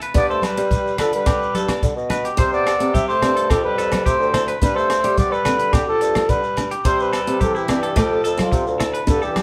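Warm and danceable, this brief highlife guitar band excerpt at 108 BPM in a straight 4/4 sets a dark, breathy trumpet melody with scooped notes up front over a soft-attacked bassoon bass with light vibrato, a raspy, growling tenor saxophone second line in the background, twangy electric guitar arpeggios, a picked steel-string acoustic guitar, a compact cocktail drum kit with a punchy kick, hard-handed congas, a grainy shekere and ringing agogo bells, all played live in one room with light reverb over G, C and F chords.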